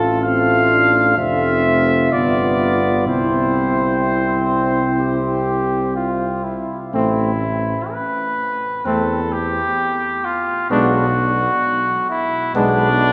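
A slow, noble and triumphant classical brass quintet at 63 BPM opens in C major, with a distant, roomy cornet carrying the melody up front over a mellow trumpet second line, a warm French horn with light vibrato in the background, and a tuba bass with a smooth top. A close-miked trombone joins the accompaniment at 0.2 s, and at 6.9 s the harmony turns to A minor, reaching a G#dim/B chord at 10.7 s. A wet cathedral reverb with a 4.3 s decay surrounds this passage cut from a longer piece.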